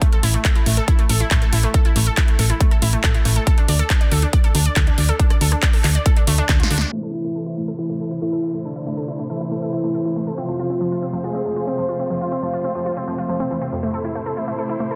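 Uplifting trance with an emotional, soaring mood, this excerpt opens with a bright, detuned unison pluck playing arpeggios over a punchy, up-front kick, a layered dance kit with metallic, low-pass-filtered hats, and a round, dark FM bass with tube saturation. The pluck, kit and bass all pump against the sidechain until a drum fill from 6.5 seconds and a band accent at 6.8 seconds. From 6.9 seconds the rhythm section drops away and a velvety synth lead carries a second line with chorus, tremolo and delay, while a lush, distant string section with expressive vibrato sustains chords under a filter sweep and a very quiet downlifter. The dense, heavily limited master sits in light reverb, and the delayed pluck keeps playing its arpeggios to the close.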